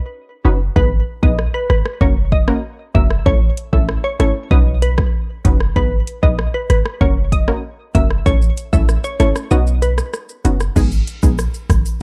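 A deep, boomy 808-style bass sits up front in this bouncy, sultry dancehall excerpt at 96 BPM in G# minor, under an overdriven deep house drum kit with a punchy kick, metallic hats, rim click, shaker and crash. Detuned sawtooth chord stabs pump with sidechain and chorus through a Badd9, G#m, F#, A cycle, while a glassy, crystalline wavetable pluck carries the melody with chorus and digital delay. The kick drops out at 9.5 seconds, and a close, dry tube shaker joins in the background at 10.8 seconds, in a dark mix with little reverb.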